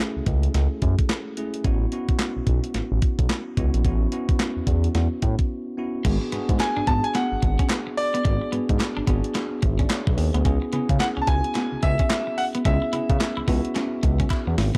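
A swung sixteenth-note groove drives this punchy, slick new jack swing cut from a longer R&B piece, set by a crisp 8-bit drum machine with a thumpy kick, a medium-tuned snare, hi-hat, handclaps and crash cymbal, its sampler-style sound tape-warm and placed up front. Beneath it, a smooth synth bass mixing sawtooth, square and triangle tones adds a nasal edge, a fast attack and vibrato on sustained notes, while a bell-like tine electric piano supplies bright, clean chords moving from F#m7 to A6. After a short break, the harmony shifts to G#m7b5 and later C#m7, and at 6.0 seconds a slightly broken-up, picked electric guitar riff enters in the background, compressed and coated in lush chorus. At 6.6 seconds a clear, polished concert grand piano takes the melody up front with long sustain and delay, joined by a hollow, distant group handclap heard in a large room. A drum fill closes the passage, and the dark, warm production keeps reverb to a minimum throughout.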